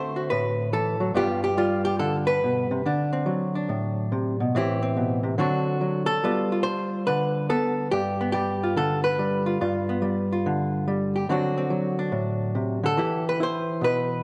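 A swung eighth-note feel in 4/4 drives this short solo jazz fragment, cut from a longer piece, with a relaxed, swinging mood at a brisk pace. A lone hollow-body electric jazz guitar carries everything from 0.0 to 14.2 seconds, fingered and clean, its dark tone sitting up front with a compressed evenness. Its range spans from G2 up to C5, moving through a dominant-heavy progression of D7, G7 and Am7 before settling onto Em at 13.0 seconds. A moderate concert hall reverb surrounds the instrument, lending the playing a sense of open space. The effect is intimate yet airy, like a single player stretching out over familiar changes.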